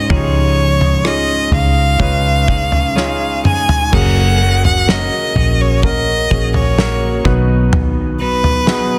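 A dense, heavily limited modern master with light studio reverb frames this short fragment of an emotional, hopeful pop ballad in F# major, moving at a slow 63 BPM in a straight 4/4. Up front, a single bowed violin carries the melody with a clear, focused tone and vibrato, sitting between B4 and G#5. Beneath it, a polished grand piano supplies the accompaniment, while a bright, twangy twelve-string electric guitar picks arpeggios in the background, its pitch drifting with a warbly wobble. A dark, round, foam-muted fingered electric bass anchors the low end. A loose indie drum kit with a punchy kick, dark cymbals and a pumping room sound plays kick, snare, rim clicks, toms and crash. A drum fill at 3.0 s leads into the second section at 3.9 s, where the harmony shifts from C#add9 to F#add9 before settling on B.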